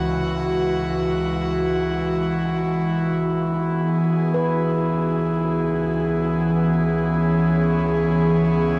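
A slow, straight 54 BPM pulse in 4/4 carries this reflective, serene ambient piece in C# minor, cut from a longer work, where an airy, breathy pad sits up front with sustained Eadd9/C# chords, softened by chorus, cassette tape and plate reverb. A round analog bass fades in beneath it at 3.2 seconds, a ringing handpan plays brief arpeggios in the background from 4.3 seconds through cassette tape and analog delay, and a very quiet, string-like drone with vibrato enters at 5.3 seconds. The home cassette recording carries a small, wet room and a faint mains hum.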